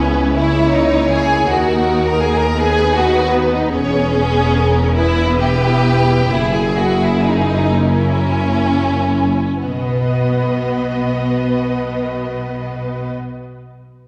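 A tender, warm slow romantic movement for string orchestra in B major opens with its full ensemble: a smooth, even violin section carries the melody above a rich, focused second violin line sitting up front, while an expressive, distant viola section fills the accompaniment and clear cellos and double basses anchor the bass with vibrato. The music moves in a rubato 6/8 at roughly 30-55 BPM in dotted quarters, slowing from 2.6 to 9.6 seconds through harmonies such as D#m, E6, Em and F#9 before settling onto B as a new section begins at 9.6 seconds. A wet scoring-stage reverb places the orchestra further back in the room, lending this fragment of a longer piece a spacious, enveloping glow.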